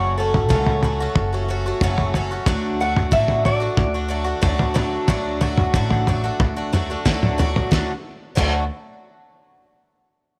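A bright, shimmering, octave-doubled picked twelve-string acoustic guitar, a woody pizzicato upright bass and a slightly broken-up electric guitar through a small old amp carrying a tremolo-laced melody until 7.0 s open this uplifting, hopeful indie folk excerpt at 92 BPM in D major. At 0.3 s they are joined by a cloth-damped, thuddy drum kit that sits up front with a fat snare, tight kick and dark, muffled cymbals. The parts play over F#m moving to D, with a drum fill at 7.1 s leading into a new section at 7.7 s, all in a small room with light reverb.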